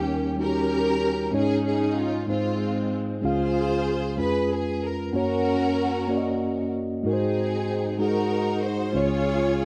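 Reverent and hopeful, this short gospel excerpt moves at a slow 63 beats per minute in a flowing 6/8, settled in D-flat major. A studio string section carries the melody throughout, its bowed ensemble tone lush and warm with vibrato and an even, smooth top end. Beneath it, a mellow tine electric piano supplies clean, direct accompaniment from the low register up into the treble, sitting close and present in the mix. The harmony travels from Eb7 through Absus4 and Ab to Db, then on through Db7/F and Gb before an Ab7 turns home to Db at 9.0 seconds. Light reverb surrounds both parts, and the overall sound has the rough character of a home demo.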